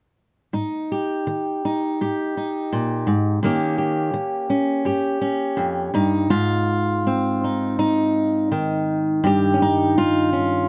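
A fingerpicked steel-string acoustic guitar carries this short folk fragment alone, its dark, auditorium-sized body sitting up front in close, detailed microphones. The mood is hopeful and pastoral, and the rubato feel lets the phrasing breathe freely over a gentle pulse in four. Its range stays low to middle, from the deep bass strings up into the middle register. The harmony moves between Ab5 and Eb7/G in the first phrase, then, as a second section begins at 6.3 seconds, returns to a full Ab before landing again on Eb7/G. The room adds little reverb, so the sound stays dry and intimate, and the passage ends at 10.7 seconds as though lifted from a longer piece.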